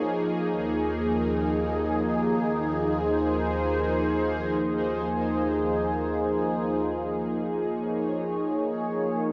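Unfolding in free time, this short cut from a longer ambient piece drifts with a serene, spacious calm, tuned slightly below standard pitch with A4 at 439 Hz. A single analog pad carries everything alone from 0.0 to 9.3 seconds, its detuned sawtooth tone smooth and softly attacked, sustaining with a long release and sitting up front. Chorus, delay and a moving notch give the pad gentle motion as it spans Eb2 to Db5, settling on an Fm/Eb chord at 0.5 seconds before shifting to Eb5 at 6.9 seconds. A huge, wet reverb with a nearly eight-second tail surrounds the sound, while a worn cassette-tape character adds warbly pitch drift.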